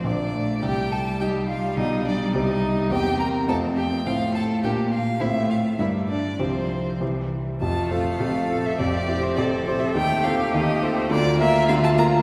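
In a flexible, rubato two-beat metre, this spirited, lively fragment of a quick classical-period piano quartet movement sets a rich, smoothly and evenly bowed solo violin with vibrato on the melody up front, while a focused, close cello and a second violin further in the background carry supporting lines. The grand piano leads the accompaniment with a clear, polished, intimate tone, short sustain and audible action noise, playing a touch louder than the strings. A wet concert-hall reverb places the ensemble further back in the room, and the phrase moves into a new section at 7.6 seconds.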